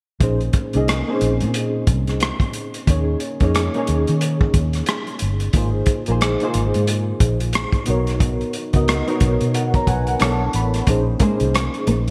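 A swung 16th-note groove at 90 BPM in 4/4 drives this smooth, sultry R&B and neo-soul excerpt, where a crunchy, saturated breakbeat kit with a punchy kick, hi-hat and rim click sits up front in gated reverb, a round, foam-muted vintage fingered electric bass holds the low end, a reedy, clean electric piano with ensemble chorus moves through chords from Bbm11 to Bmaj9 and adds a fill at 9.5 seconds, and a small, dark fingerpicked nylon-string guitar slips in at 11.2 seconds, set in a bright 1980s-style digital production with light small-room ambience.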